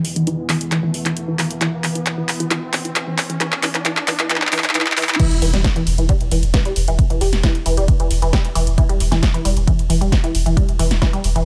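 Dark, moody pad drone and an overdriven analog drum machine open this intense, relentless slice of driving peak-time techno, with the drum machine's punchy snare, handclaps, hi-hats, ride and crash cymbals sitting up front, and a short room on the snare, claps and hats. A squelchy, resonant blip pluck enters at 0.2 seconds with a juicy riff, coloured by phaser, tube saturation, delay and sidechain pumping, while the pad's evolving, chorused sawtooth layers pump beneath it. Across the opening build-up a drum fill and a filter sweep push forward as a riser climbs in the background. The drop lands at 5.2 seconds with an impact, as the pad falls away and an overdriven, punchy electronic kick drives in up front. A thick, saturated sub bass joins at 5.3 seconds, low-pass filtered and pumping, giving the groove a deep, heavy floor under the relentless pluck and drums.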